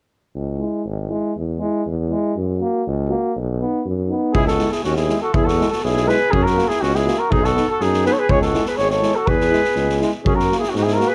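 A straight 2/4 pulse at 121 BPM drives this fiery, virtuosic Balkan brass band excerpt in C# minor, opening at 0.3 seconds with a clear, up-front tuba bass, joined at 0.6 seconds by a bright trombone and a vibrato-laced euphonium set in the background, cycling through C#m, E, F# and B. At 4.3 seconds a street-band drum kit with a boomy kick and medium-tuned snare enters as a distant, roomy flugelhorn takes the melody up front, and a second flugelhorn adds a lower line. The playing is classical in style, and the close, detailed sound carries little reverb.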